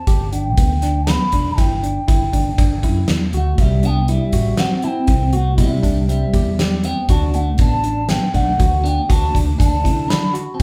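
A mellow bass bansuri opens this driving, tense progressive instrumental at 120 BPM in 7/4, its soft-attacked, airy bamboo tone carrying the melody over bell-like tine electric piano arpeggios, a dark, round fretless bass and a punchy, up-front gated 80s drum kit with a medium-tuned snare. At 3.4 seconds a clean, picked electric guitar joins with a second line coloured by harmonic tremolo, while the harmony moves through G5, C and D6. The band sounds as if playing live together in one room, bathed in a wet, large studio reverb, in this short cut from a longer piece.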